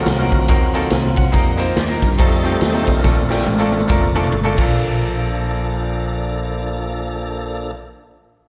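Heard live through a venue's PA with a recital-hall ambience, this soulful, uplifting snippet of swinging uptempo gospel opens on a full, clean tonewheel organ solo with key click, fast rotary speaker and chorus vibrato, set over a brilliant, up-front grand piano with audible action noise and slapback echo, a round, punchy fingered electric bass, and a natural big-room drum kit whose fill begins at 3.0 seconds before the kit stops at 4.7 seconds.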